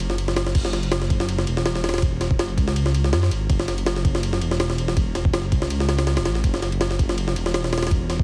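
Dark and atmospheric, this drum and bass cut from a longer jungle piece hits its drop at 0.6 seconds with a swung sixteenth-note feel. A gritty, pitched-up sampler-style kit sits up front with a thumpy kick, high-tuned snare, crash and ride. Alongside it, a deep, rumbling detuned saw bass, also up front, beats and sustains, all under light reverb, vinyl crackle and a heavily compressed, radio-like sheen.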